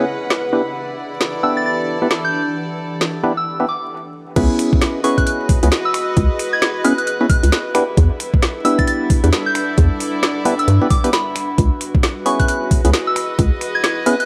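UK garage two-step in C# minor at 133 BPM, bouncy yet moody, where an ethereal pumping pad, distant reedy chamber strings and up-front phased organ stabs set the scene, a soft, pure synth bell melody with dub echo enters at 1.4 seconds over a garage drum kit of woody snare, metallic hats, finger snaps and crash, and after a brief stop the drop lands at 4.4 seconds with a hollow, knocking FM bass and an overdriven electronic kick, all under a light reverb and a vinyl crackle.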